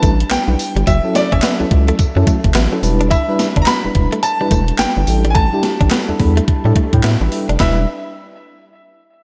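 A swung sixteenth-note groove in four drives this confident, bouncy new jack swing excerpt, built on a gated 80s digital drum machine with a thumpy kick, a gated-reverb snare, handclaps, hi-hat and tambourine, all sitting up front with a tape-warmed, sampler-style edge. Beneath it, a round analog bass holds the low end with a deep, mellow tone and a quick filter pluck that sustains. A bright grand piano carries the melody high in its range, its brilliant, open notes cut short and trailed by slapback and tape echo. An FM electric piano with tremolo fills in the harmony with a dark, decaying tone and adds fills at 2.3 and 5.9 seconds. A clean, compressed electric guitar, recorded direct and set in the background, picks a riff under slapback echo and subtle chorus. The harmony moves from Em7 through F#m7 and A7sus4 before returning to Em7 at 7.6 seconds, and a lush hall reverb gives the mix a big arena sound.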